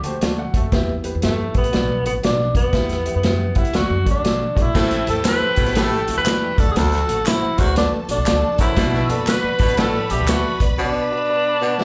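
A swung 4/4 groove drives this passionate, uptempo 1960s-style soul cut, taken from a longer piece and heard as a live club gig through the venue's PA with light room reverb. A dark, tight vintage drum kit sits up front with dark cymbals and a rolled-off top, joined by a woody, thumpy pizzicato upright bass on gut strings, while an intimate upright piano with audible action noise and long sustain opens with a short fill before settling into the background. Carrying the melody, a breathy tenor saxophone plays up front in a whispered, jazz-style subtone, with soft attacks, scooped notes and vibrato. Around 4.7 seconds the arrangement fills out as an edgy, close-miked baritone saxophone begins a low riff and a tight, vintage-sounding horn section adds a second line. Lush, bowed studio strings with a smooth top enter at 4.8 seconds alongside close, dry tambourine and group handclaps. Slapback echo colours the saxophones, piano, drums, horns and strings, lending the set a period sheen.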